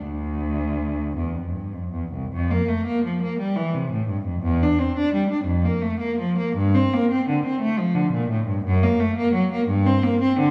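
A lone bowed cello carries this grave, flowing baroque-style suite movement in F major, its rich, smooth tone shaded with vibrato and kept even across a range from C2 to D4. The 6/8 pulse moves slowly at around 50-58 beats per minute in dotted quarters, loosened by rubato, and the opening idea returns at 2.3 s. Though the player sits up front, the sound carries a distant quality, heard from further back in a recital hall with a generous 1.5-second reverb, in a short cut from a longer piece tuned to A4 = 441 Hz.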